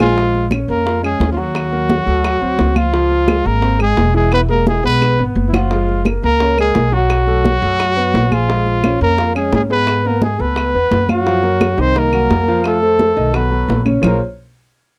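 Opening on a drum fill, this sultry, sophisticated Afro-Cuban jazz at 173 BPM in Bb minor sets a warm, up-front trumpet with vibrato over a dark trombone second line in the background, accompanied by a smooth vintage grand piano moving through chords such as Dbmaj7 and Db7alt, a woody pizzicato upright bass, and soft-handed bright congas and tight bongos beside claves, recorded dry and close in a 1970s-style studio, with another fill at 5.0 seconds.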